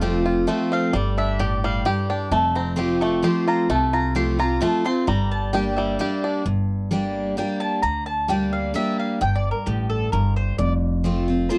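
A straight 3/4 pulse at 131 BPM drives this lonesome bluegrass excerpt in G dorian, tuned to A4 = 437 Hz, with a full-bodied dreadnought guitar up front picking the accompaniment over a woody pizzicato upright bass. A twangy, percussive banjo plays arpeggios until 6.5 s, while from 0.5 s a double-strung mandolin carries the high melody over chords that move between F, G5 and Gm. The sound is dry and close, like a 1970s studio session, with only a touch of reverb.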